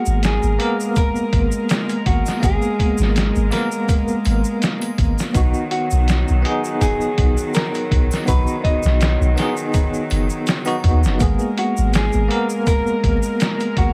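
Brooding, melancholic trip hop in which a dark, fingered electric guitar carries the melody through tape echo over a bell-like electric piano with tremolo and a distant, earthy chamber string section holding sustained chords, while a deep, round 808-style bass and a muffled, pitched-down sampler kit with vintage 12-bit grit sit up front beside close, dry tube shaker and triangle, all beneath vinyl crackle and light reverb.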